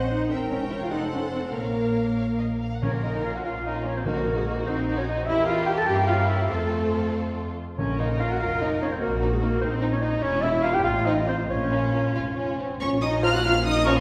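Stormy and restless, this quick classical-period orchestral movement in Bb minor sways in a rubato 6/8 at roughly 90-101 BPM, with a rich violin section carrying the melody over a lush second violin line, an even viola accompaniment, and a bass line shared by expressive cellos with portamento and an up-front double bass section. A mellow horn section holds chords at the opening and again from 12.8 s, a distant, roomy clarinet joins at 2.8 s alongside soft, round timpani strokes, and oboe, pure-toned flute and bassoon touch in briefly near the close. Harmonies circle through diminished and dominant chords back to Bb minor, all set in a wet scoring-stage reverb heard from further back in the room, in a short cut from a longer piece.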